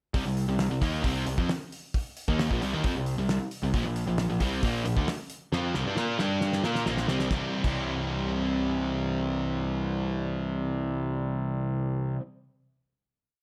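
A straight 4/4 classic rock groove at 134 BPM in C mixolydian drives this short, swaggering piece, where a cloth-damped, thuddy drum kit with a fat snare and dark cymbals plays until 7.8 seconds, a punchy fuzz bass pumps eighth notes doubling the riff, a sludgy distorted guitar sits up front beside a bright, crunchy overdriven guitar further back on a power-chord riff through C5, Bb5 and G5, and a drum fill from 5.5 seconds leads into a final C chord ringing in light reverb from 7.3 seconds.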